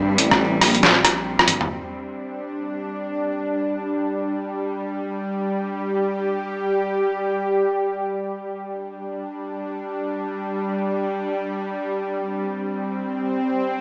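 A gritty, pitched-down trip hop drum kit sits up front in this brooding, meditative deep dubstep excerpt in G minor, its low-passed hi-hat, rim click, snare and toms playing through the opening drop and a fill at 1.5 seconds, over a rumbling, detuned saw bass. A reedy, gut-string cello with light vibrato drifts in the background through sampler grit and dub echo, while a tense, string-like drone with a slow attack and vibrato carries on alone from 1.7 to 13.8 seconds. The free-time piece is bathed in a lush hall reverb with a small-speaker sound.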